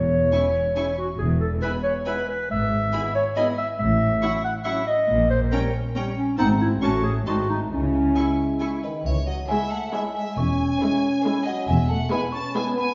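Heard from the back of a reverberant stone room with a dulled top end, this playful, whimsical cinematic cue in C# minor has a sneaky, magical mood and moves at 138 BPM in 3/4, with a mellow, up-front clarinet line over bowed cello and double bass sections, a rich violin section carrying the melody above a lush second violin section and an expressive viola section, and dark French horn chords, until a bell-like celesta joins the melody at 8.8 seconds, followed shortly by a brief triangle in the background.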